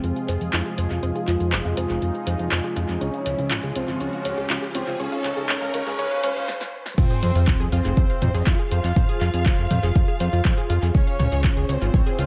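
An overdriven, up-front electronic kick drum arrives with the drop at 7.0 seconds, anchoring this driving, cinematic melodic techno at 121 BPM in F minor, after a build-up in which a nasal, sawtooth analog lead and a punchy unison pluck arpeggio move through filter sweeps over an airy, chorused pad that ends at 6.5 seconds. Beneath them a thick, detuned analog bass pumps to the sidechain along with the lead, pluck and pad, while a deep house kit with a punchy snare, metallic hats, claps, toms and crash carries overdrive and tape echo, and a background riser and sub drop shapes the build before a brief stop and drum fill. After the drop a rich, bowed violin section with expressive vibrato enters softly in the background, and the whole piece sits in an echo-heavy mix with light reverb and a high-pass filter.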